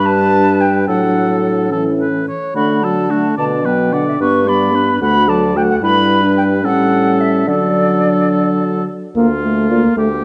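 From the first second, an airy, tongued concert flute sings the melody with vibrato over a softly attacked oboe second line, a vintage-toned clarinet and a mellow French horn in accompaniment, and a distant, roomy bassoon bass, all five winds playing together in this graceful, cheerful, quick classical-period movement in 6/8, which reaches a D minor chord at 9.2 s in a wet recital hall with a dark, warm production before the excerpt breaks off at 10.2 s.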